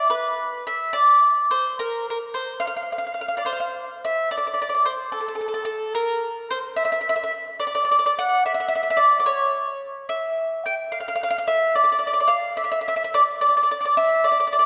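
A solo mandolin carries this short Italian folk excerpt, its picked double strings sounding bright and woody as it sits up front in the mix. The mood is romantic and sunny, moving in a straight 6/8 at 72 beats per minute counted in dotted quarters. The melody stays between A4 and G5, with tuning set slightly low at A4 = 436 Hz. The piece states a section and then repeats it from 4.3 seconds, running until 14.7 seconds as a fragment cut from a longer work. A wet concert hall reverb with a 2.3-second decay surrounds the lone instrument, giving it the spacious sound of a church or concert hall.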